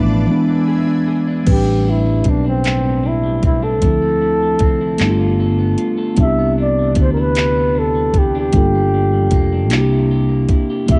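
A late-night, sultry slow R&B excerpt in 6/8 at 51 BPM in A minor opens with a breathy, dark flugelhorn, a twangy, slightly broken-up electric guitar with subtle chorus, a mellow tine electric piano, a growly fretless bass and a lush, detuned unison pad that drops out at 1.5 seconds and returns only briefly at the very end. At 1.5 seconds, an up-front electronic drum kit with knocking kick, metallic hats, handclaps and crash enters beneath an intimate, jazz-style flugelhorn solo over Am11, Dm9, G9 and Cmaj9 chords, the whole mix carrying a lightly reverberant, cassette-muffled home-recording sound.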